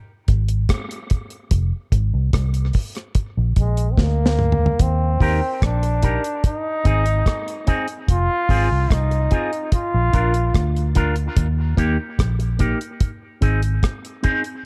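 At 73 BPM in straight 4/4, this dub reggae cut opens on a break, with a deep, dry kit of tight kick, medium-tuned snare, rim click, hi-hat and toms sitting up front beside a round, foam-muted vintage bass that plays fingered and amped. A breathy trombone takes the melody from 3.6 s, soft in attack and intimate, with light vibrato and tape echo, while a drum fill rounds off the break at 4.0 s. From 5.2 s an electric guitar adds clean, twangy, picked accompaniment through an envelope filter, also carrying tape echo and sitting lower in the mix. The harmony in Eb major circles Fm, Bb, Eb and Ab, and the drums keep a smooth, rolled-off top. Light reverb and a dusky, warm production give the piece a spacious, hazy mood.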